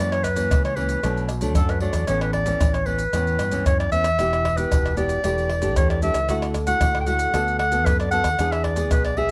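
A light reverb gives this short cut from a longer samba and choro piece a gentle sense of space, while the percussion sits close, dry and up front. The mood is sunny and joyful, moving at 114 BPM in a straight 4/4, tuned to A4 = 435 Hz. A warm, classical-style clarinet carries the melody as a solo voice in the foreground, set in plate reverb. Beneath it, a fingerpicked nylon-string guitar supplies acoustic accompaniment in a classical manner, and a round, amped fretless electric bass holds down the low end. Maracas, pandeiro, tamborim and a tight surdo join at 0.1 seconds, played with hard hands. The harmony runs from F#7 through Bm7, Aadd9, Em and Dadd9 before settling on E7 near the close at 8.4 seconds.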